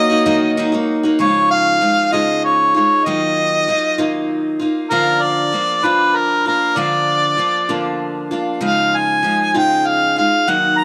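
A steady 6/8 at 64 BPM carries this intimate, melancholic acoustic folk excerpt, where an up-front harmonica with light vibrato sings the melody over a bright, woody steel-string guitar accompaniment, while a shimmering, octave-doubled twelve-string guitar with slapback echo adds arpeggios only until 1.3 seconds, all bathed in a wet spring reverb as the chords move from Ebm through Dbadd9, Ebmadd9 and Bb/D before returning to Dbadd9.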